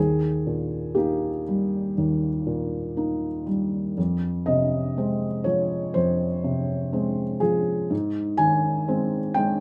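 Loosely rubato in a slow four, this reflective, wistful excerpt of neoclassical minimalist piano features a lone felt-muted upright piano, soft, mellow and intimate, sitting up front in light reverb as it moves from Eb to Fm and then to Ab at 7.9 seconds, spanning a range from Eb2 to Ab5.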